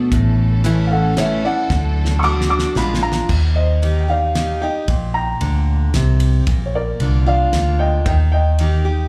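Picked, full-bodied jumbo acoustic guitar with slapback echo opens this heartfelt, nostalgic honky-tonk and classic country waltz at 113 BPM over a lush, bowed string section set distant in the background until 3.3 s, as a round, foam-muted fingered electric bass sits up front, a damped 70s kit with fat snare and tight kick plays a fill from 1.7 s, and a dark, woody upright piano with short sustain and slapback echo carries the melody from 0.9 s while the key lifts from D major to Eb major at 3.3 s, all heard as a live gig through the venue's PA in a small room with club reverb.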